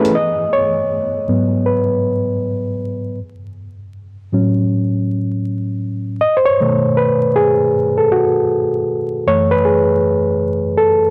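Swung sixteenths in 4/4 carry this hazy, reflective hip hop fragment, where an overdriven reed electric piano plays alone from start to finish, reedy and up front through a combo amp and softened by a low-pass filter, moving through G#m7, A6, B7 and F#m9 inside light digital reverb, all on a dry, gritty hardware recording dusted with vinyl crackle.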